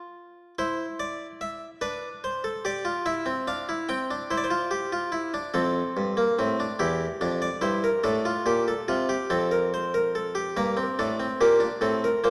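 A bright, airy solo harpsichord with a single set of plucked strings in the Italian style sits up front, spinning out an elegant, lively four-part fugue in a baroque manner, in 6/8 with a straight feel. The excerpt, cut from a longer piece, moves through chords centred on C and F before turning to a G minor add9 colour at 10.6 seconds. A dark, warm production places the instrument in the deep, wet reverb of a scoring stage.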